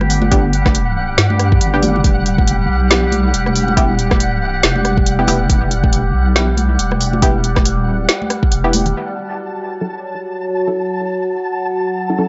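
A deep, soft wobble bass sits up front in this cavernous, meditative slice of deep dubstep at 139 BPM, its dark, chorused tone moving over G and Em in F# phrygian with a half-time, swung feel, backed by a layered electronic kick and a deep house kit of woody snare, rim click and smooth hats, with ringing, hard-handed congas echoing in the background. Above them, a resonant drone with moving overtones and phaser, muted detuned dub chord stabs with a filter pluck, and a flickering, grainy granular texture fill out a dry, gritty, dark-topped sound. The kick drops out at 8.5 seconds, and from 8.9 seconds the bass, kit and congas fall away, leaving the drone, texture and filter-swept stabs on an F#m7 chord.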